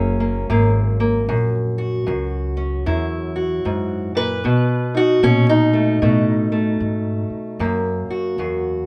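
Acoustic country blues with a laid-back, swaggering swing, this short excerpt features a dark, boxy parlour-style steel-string acoustic guitar, fingerpicked and up front, carrying the melody as a solo across the F#7 to B7 and back to F#7 changes at 4.4 and 7.6 seconds, over a woody pizzicato upright bass strung with steel, all captured dry in the open air.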